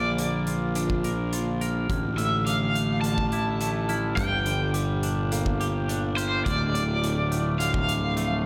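An overdriven lead guitar sits up front, carrying the melody between C5 and A5 with tremolo and slapback echo, its tone bright and cranked. This melancholic, cinematic post-rock excerpt moves at 105 BPM in a straight 4/4 in D minor, cut from a longer piece. Beneath the lead, a fuzzy, round electric bass sits up front in the low register. A clean, twangy, compressed electric guitar picks arpeggios through analog chorus, and a glockenspiel struck with soft plastic mallets rings out bell-like arpeggios high above. An ethereal, very quiet pad enters at 0.1 seconds with sustained chords, and a big acoustic rock kit joins at 0.2 seconds with hi-hat and a boomy kick. The harmony moves from Bb to Dmadd9/A, then Gm and Dmadd9, all set in a lush hall reverb that gives the sound an arena-sized scale.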